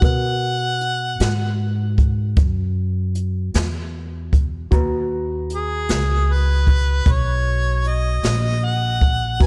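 Slow blues in 12/8 with a brooding, soulful mood, this short section from a longer piece rests on a single G#m7 chord. A warm harmonica carries the melody from 0.1 seconds, played up front in a jazz style with light vibrato, scooped notes and a smooth top, its tone roughened by overdrive and trailed by a slapback echo. An upright bass plays pizzicato beneath it, woody and growly with steel strings, sitting up front alongside a jazz brush drum kit whose medium-tuned snare, boomy kick and hi-hat are played with brushes. Further back, a dark, mellow upright piano supplies accompaniment with audible action noise and a vintage, intimate character, touched by its own slapback echo. Light reverb and a small room ambience give the whole band a close, acoustic feel.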